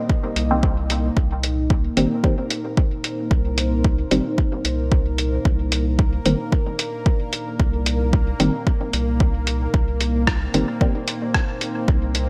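A lightly swung 4/4 pulse at 112 BPM drives this deep, nocturnal dub techno cut in C minor, anchored by an overdriven, layered electronic kick up front and a muffled, pitched-down sampler-style kit of hi-hat and rim click. A round, mellow analog bass pumps against the kick on a single Cm7 chord, while muted, filter-plucked dub chord stabs from 0.5 to 10.9 seconds carry chorus, phaser and dub echo. Above them a dark, detuned ambient pad with a moving notch and a resonant, bubbling stepped-filter texture sustain throughout in light digital ambience with a bright 1980s-style production sheen.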